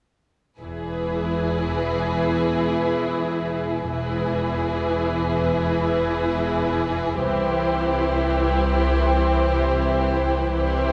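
This cinematic excerpt opens at 0.6 seconds with a full string body of violins, violas, cellos and double basses sounding together, all playing through to 10.9 seconds in free time. The mood is majestic and triumphant, with the harmony resting on E before shifting to C at 7.2 seconds. Up front, the violin section carries a second line with a soft attack, vibrato and a smooth, expressive top, while the violas fill the accompaniment with a focused, close, lush tone. Beneath them the cellos sit in the background with a rich, even vibrato, and the double basses anchor the low end with a smooth-topped, bowed depth. A wet recital hall reverb, like that of a church or concert hall, wraps the ensemble and lends the fragment a spacious, grand bloom.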